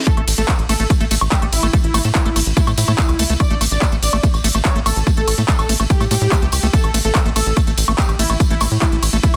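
Psychedelic trance at 144 BPM in A major, hypnotic and psychedelic, this short excerpt is driven by an overdriven, up-front electronic kick layered with a techno kit of handclaps, smooth hi-hats, ride and woodblock, while a tight, punchy sequencer bass of dark sawtooth and square plucks drives from 0.2 seconds beneath a squelchy, resonant liquid acid riff with chorus, filter sweeps, sidechain pumping and dub echo. Above it a thick, bold unison lead of detuned saws with a sub octave and vibrato carries the melody, colored by phaser, gritty 12-bit sampler texture, pumping and dub echo, as a jingly acoustic tambourine sits in the background. The digital ambience and dense, heavily limited modern master keep the whole groove loud and compact.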